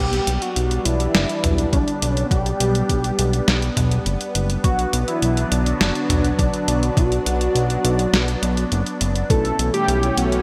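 This is a short cut from a longer synthwave track, with a bright, 1980s-style digital sheen bathed in a lush hall reverb that lends it a nostalgic, nocturnal mood at 103 BPM in a straight 4/4. A fat, sawtooth analog bass sits up front from the start, sustained and moving through a filter sweep, while a bold, detuned unison lead carries the melody between D4 and A4, its mellow tone thickened by a sub octave, vibrato and delay. Just behind it, a detuned unison pad holds sustained chords with a slow attack, shimmering through chorus and phaser and pumping against the sidechain. The rhythm comes from a detuned 8-bit drum machine, whose tape-warm, medium-tuned snare, hi-hats and toms sit forward in a small room, joined at 1.7 seconds by a thumpy electronic kick. The harmony moves from G to B minor and then to A. At 9.3 seconds a dark, round synth brass adds brief stabs in the background, roughened by vintage 12-bit sampler grit.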